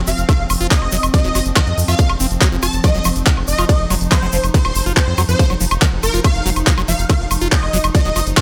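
Set in a digital ambience, this alien, hypnotic psychedelic trance passage at 141 BPM rides on a tight, tape-warm electronic kick that enters up front at 0.3 s alongside a garage drum kit of crisp hats, handclaps, ride cymbal and woodblock, while a round, deep analog bass holds the low end, a squelchy, resonant acid bass riff with phaser and dub echo sits in the background, a swarming, detuned rave lead with pulse-width modulation, chorus and sidechain pumping carries the melody over an evolving, warbling wavetable pad of sustained chords, and a grainy tube shaker adds texture.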